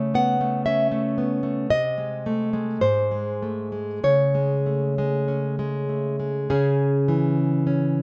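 Set in a loose, rubato 2/4 at roughly 48-58 BPM, this short excerpt from a romantic piece for solo classical guitar in C# minor features a fingerpicked nylon-string guitar, up front and warm, whose sunny mood drifts through chords from A69/C# to G# and C#5 before settling on C# minor at 6.5 seconds, all wrapped in the moderate reverb of a large studio room.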